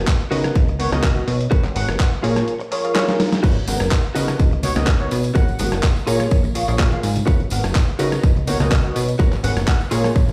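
Nostalgic and funky, this filtered disco house excerpt moves at 125 BPM in 4/4 with a straight feel in G# dorian, cycling through C#13sus4, G#m11 and A#m7 chords over a steady sidechain pump on the synth comp, bass, guitar, trumpets, hats, cymbals and hand percussion. A punchy, tape-warm electronic kick sits up front beside a plucky sawtooth analog bass, while a gritty, overdriven sampler-style soul kit adds handclaps, rim clicks, snare, hi-hat and crash, with a drum fill from 3.0 to 3.4 s ushering in bright, dry tambourine and congas at 3.4 s. A nasal, detuned polysynth comp with chorus and phaser, a clean, picked direct guitar riff, and a tight, close-miked trumpet section with vibrato and tape echo sitting in the background fill out the mix, all heard as if played through a big sound system in a bare stone room.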